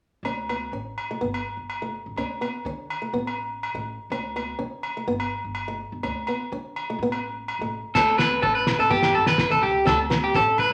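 A twangy, slightly broken-up electric guitar sits up front in the final seconds of this short highlife guitar band excerpt, entering at 8.0 s with picked arpeggios that brighten the danceable, carefree groove at 125 BPM in 4/4. Before that, a boxy, fingerpicked acoustic archtop guitar carries the accompaniment over a woody pizzicato upright bass, with ringing, vintage-sounding agogo bells present from the start. The harmony cycles through D5, Gadd9 and Asus2, keeping the mood light and open. At 8.0 s a cloth-damped, thuddy drum kit arrives with a fat snare, tight kick and dark, muffled cymbals, its gritty, lo-fi character adding weight. Low-tuned congas with a thick-skinned, damped tone join at 8.2 s, sitting in the background beneath the band. A large studio reverb gives the ensemble a roomy, wet sheen.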